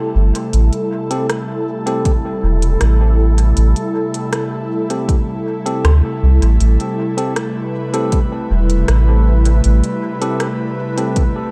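The soft dub sub bass stands out most, a deep, round and mellow low end sitting up front from 0.2 to 9.8 seconds in this short cut from a longer ambient dub piece in A minor at 79 BPM. Around it an airy, breathy pad with chorus holds sustained chords on Am7 across the whole 11.5 seconds, its detuned, slow-blooming tone giving the music a deep, spacious mood. An organic electronic drum kit of smooth hi-hats, rim clicks and woodblock carries studio reverb and dub echo, while a clean, bright tine electric piano adds stabs with its own dub echo from 1.1 seconds. An overdriven electronic kick drum enters at 2.1 seconds, layered and up front, with the weight of a large room behind it. The straight 4/4 feel stays unhurried, and a light reverb wraps the mix in gentle space.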